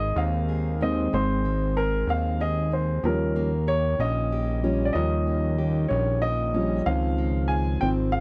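Tender and romantic, this short fragment of a six-eight pop ballad in Ab major moves at a slow 63 BPM, with a woody, polished upright piano carrying the lead throughout over chords of Ab, Eb7 and Dbmaj7. A jumbo steel-string acoustic guitar adds full-bodied fingerpicked arpeggios with audible finger squeak, while a fat, detuned sawtooth analog bass with a plucky filter and long, thick sustain sits up front beside the piano. The sound is dry and close, like a 1970s studio, with only a light touch of reverb.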